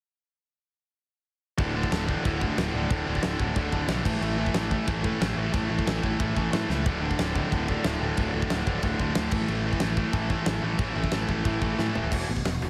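Punk rock with an energetic, rowdy mood, cut from a longer piece, where two guitars drive the riff in straight 4/4: an overdriven, cranked stack guitar and a tight, up-front distorted guitar, both bright and picked, circling D5 and A5 power chords before landing on E5 at 12.1 seconds. A direct, growly picked electric bass sits beneath, while a big acoustic rock kit with a fat snare, punchy kick, crash, hi-hat and toms sounds dark and smooth in a large room, dropping fills at 6.7 and 11.8 seconds. Light reverb and heavy compression give the whole a squashed radio sound.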